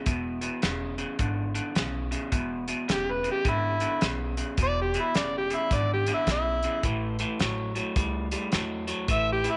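Lightly reverberant with a rolled-off top, this laid-back, rollicking electric blues shuffle at 106 BPM, cut from a longer piece, rides on a slightly broken-up, lo-fi riff from an electric guitar through a small old amp, woody pizzicato upright bass and a saturated soul drum kit with a fat snare and tight kick, before an overdriven, gritty harmonica enters at 2.9 s for an up-front, jazz-style solo full of tongue slaps, scooped notes and light vibrato over a change from E7 to A7.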